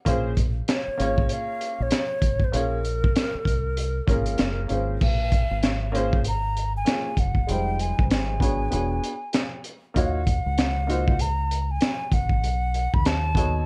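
Cool and nocturnal, this jazz-hop excerpt moves at 97 BPM in Bb minor with a swung sixteenth-note feel, drifting from Bbm9 through Fm9 and E13 toward a closing B9. A crunchy, saturated breakbeat kit with a punchy kick, high-tuned snare and dark cymbals sits up front beside a round, deep dub bass, while a woody, slightly detuned upright piano, its action noise audible, comps alongside in plate reverb. From 0.7 seconds a hollow, pure concert flute carries the melody with vibrato, its tone also bathed in plate reverb, and the section shifts at 5.0 seconds.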